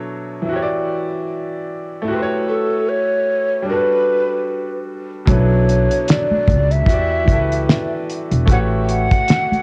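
A bright upright piano opens this hazy, nostalgic lo-fi hip hop clip in B minor, its intimate sound carrying audible action noise and long sustain through a cassette-tape grain and a low-pass filter as it moves through Em7, A13 and Gmaj7. At 2.5 seconds a breathy jazz flute takes the melody, mellow and hollow yet with a crisp, chiffy attack and gentle vibrato, also softened by a low-pass filter. At 5.3 seconds the groove arrives at 75 BPM in 4/4 with a lazy 16th-note swing: a pizzicato upright bass with gut strings sounds woody and thumpy, given extra grit by transformer saturation. Alongside it, a cloth-damped drum kit of kick, snare and hi-hat plays dry and dark, with a fat snare, a tight kick and a rolled-off top, its tape coloring adding to the dusty feel. The harmony then settles on Bm11 before returning to Em7 and A13, with every part placed up front in a light, home-recorded studio reverb, as the clip ends, cut from a longer piece.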